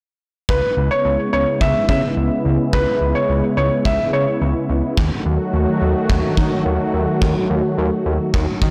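From 0.5 s, a punchy acoustic kick, a fat, detuned sawtooth bass and a smooth, warbling analog pad with chorus and a filter sweep drive this nocturnal synth-pop excerpt in C# minor at 107 BPM, while a polished baby grand piano adds a delayed second line until 4.2 s over chords moving from C#m7 to D#dim at 5.0 s, set in a lush hall reverb and a blown-out, overdriven recording.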